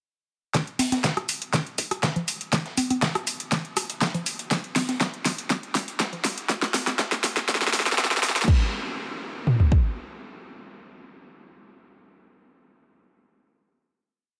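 A deep, tape-warm house kick drives this short, expansive and bittersweet 121 BPM drum build in 4/4, layered with toms, a fat snare, metallic hats, rim clicks and crash, dry, overdriven congas, and a gritty, compressed sampler-style breakbeat in the background, all building from 0.5 to 8.5 seconds before a final hit rings out in a huge ambient reverb until 12.4 seconds.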